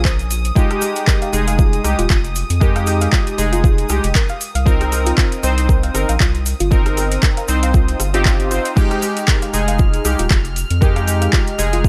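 A 117 BPM groove in 4/4 with a 56% swing on the sixteenths drives this smooth, late-night deep house excerpt in F minor, where an overdriven electronic kick sits up front beside a layered kit of handclaps, rim clicks, metallic hats and a crash, all bathed in studio reverb. A grainy, saturated tube shaker ticks along in the background while a round analog bass, dark and sustained with a wave-folded edge, pumps against the kick from the very start. Detuned, airy analog keys enter at 0.6 seconds with chorused, tape-echoed stabs that warble and decay, moving through Fm9, Cm7 and back to Fm9. Alongside them a soft pluck traces gentle arpeggios with a moving notch and short decay, its pumping and echo tucked in the background. High above, a studio violin section adds a reedy, gut-string texture with light vibrato, and an electronic swell sounds briefly at 7.9 seconds, all set in a digital ambience.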